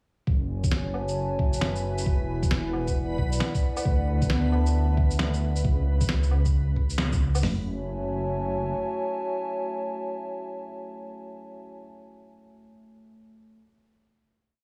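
A dark analog pad, a detuned saw bass and a muffled, pitched-down drum kit open this short, ghostly future garage piece at 134 BPM in F# minor, swung and rainy in mood. The kit's thumpy two-step kick, medium-tuned snare, toms and open hat sound tape-softened and compressed, joined by a skittering shuffled layer of electronic shaker, low woodblock and a second snare. Beneath them the bass rumbles with long gliding notes, up front and saturated, while the pad holds slowly shifting nasal chords through F#m7, E7 and Dadd9, both parts pumping against the beat. A reversed, granular texture swells dreamily around a single held high note, and from 3.8 seconds muted, felt-like synth keys scatter intimate notes through chorus and tape echo. After a band accent at 7.0 seconds the drums fall away, and the pad rings out a final F#m7 until 11.8 seconds, with the keys trailing alone to 13.5 seconds in a light digital ambience.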